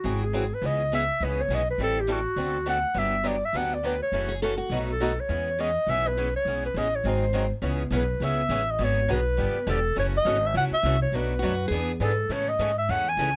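Lively and charming, this brisk 206 BPM acoustic string swing excerpt in E major, turning to C# minor at 7.6 seconds, features a mellow, breathy clarinet singing an up-front solo melody with vibrato and scooped notes over a thumpy, woody pizzicato upright bass, a bright picked steel-string guitar, a boxy swing-style guitar, and a second steel-string guitar adding short phrases at 4.3 and 11.4 seconds, all captured by close, detailed microphones with little reverb.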